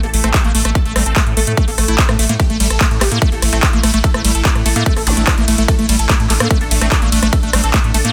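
A straight, driving 4/4 pulse at 146 BPM anchors this psychedelic trance excerpt in A phrygian, with a punchy, up-front electronic kick entering at 0.3 seconds over a big-room dance kit of handclaps, metallic hi-hats, ride cymbal and rim clicks, while a round, dark analog bass holds the low end. A huge, detuned supersaw carries the melody through phaser, digital delay and sidechain pumping, joined by a squelchy, resonant acid bass riff with filter sweeps, a saturated FM wobble bass line in the background, and a drone of sustained chords with moving overtones and built-in reverb. A very quiet zap flickers at 5.1 seconds, and the whole is heavily limited into a dense, modern master.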